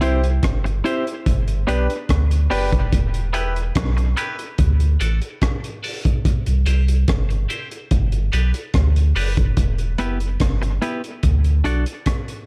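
A straight 4/4 pulse at 72 BPM from a crunchy, saturated breakbeat kit of tight kick, hi-hat and rim click anchors this heavy, spacious dub reggae piece in E minor, where a round, up-front sub bass holds the low end, a bright, clean semi-hollow guitar and clear grand piano stabs carry high-pass filtering and dub echo, a filter sweep runs until 9.6 seconds, and the piano stops at 9.5 seconds as the C, G, Em, D progression cycles through the dry mix.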